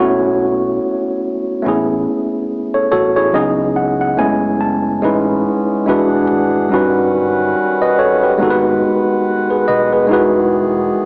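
A worn, slightly out-of-tune tine electric piano sits up front in this nostalgic, hazy hip hop excerpt at 71 BPM with a swung feel, its lightly overdriven, cassette-softened chords moving from B9sus4 through lush extended harmonies and adding a fill from 2.5 to 5.0 seconds, over a round, punchy deep dub fingered electric bass, and at 5.0 seconds a reedy, smooth accordion joins with sustained chords, all heard as a small-room home cassette recording with a small-speaker character.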